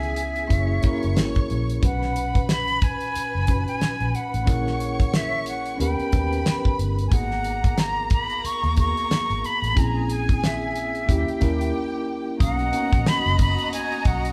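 A swung sixteenth-note feel in 4/4 drives this lush 1970s-style soul excerpt, bittersweet and silky in mood. A damped drum kit sits up front with a fat snare, tight kick and rolled-off top, while a foam-muted fingered electric bass gives a round, punchy low end. A tine electric piano plays clean accompaniment through a combo amp with medium tremolo, moving through rich chords such as Bmaj9, A#m7b5 and G#m9. An airy jazz flute carries the melody up front with expressive vibrato, joined by a dark, woody violin section playing a bowed second line with soft attack. After a short break at 11.7 seconds, a new section opens on Bmaj7 at 12.4 seconds, where a glockenspiel with soft plastic mallets adds a bell-like ringing note in the background. The band plays live in one room, set in a moderate large studio reverb.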